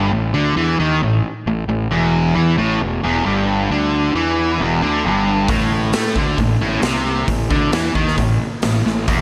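Blues rock power trio with a southern rock swagger: this driving excerpt opens on an up-front, double-tracked overdriven electric guitar riff moving from A5 to Em7 over a dark, round fuzz bass, until a raw garage drum kit with a punchy kick, gritty saturation and a pumping stone-room sound enters at 5.5 s, the whole mix set in a lush hall reverb for a big arena feel.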